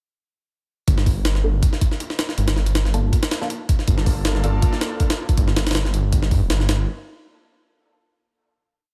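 A detuned saw bass and a jungle sampler-style drum kit arrive together at 0.9 s, launching straight into a frenetic, dark drum and bass drop at 160 BPM in G minor, with a slight swing on the 16ths and a Gm9 chord underneath. The drums are a heavily chopped breakbeat, pitched up and compressed, with a thumpy kick, a high-tuned snare and hi-hat sitting up front, their grit colored by re-recording in a large room. The bass carries a menacing, dub-style line, thick and saturated, its detuned layers beating against each other. From 1.4 s, filtered dub chord stabs drift in the background, sparse and muted, echoing through phaser and ensemble chorus as one shape moves in parallel. An airy, breathy pad holds chords with syncopated pushes from 3.9 s to 5.4 s, softened by chorus and roughened with vintage 12-bit sampler grit. The whole short piece sits in a digital ambience until the bass stops at 6.9 s.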